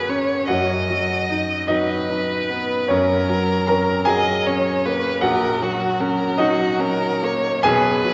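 A lyrical, tender romantic classical duo in F# major and 6/8 at a slow 50 BPM with free rubato, this fragment of a longer piece features a rich, expressive solo violin singing the melody up front with vibrato and portamento over a bright, brilliant baby grand piano accompaniment, both bathed in a lush church reverb and a dark, warm production.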